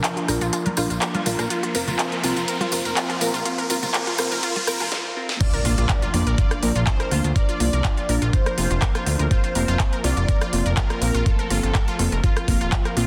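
A dense, heavily limited modern master with moderate scoring-stage reverb carries this expansive, driving progressive house excerpt at 123 BPM. Its build-up moves between Bb and Fsus4 as a filter sweep moves across a bright, detuned unison pluck arpeggio over a lush, warbling pad, a deep, dark chord stab with phaser and dub echo, a fat sawtooth analog bass with tube saturation, pop drums with a fat snare and crisp hats, jingly close tambourine, woodblock and congas, and a background riser. After a short break and drum fill, the drop lands at 5.4 s with an impact, a knocking, up-front electronic kick and a thick, bold sawtooth unison lead with vibrato and chorus.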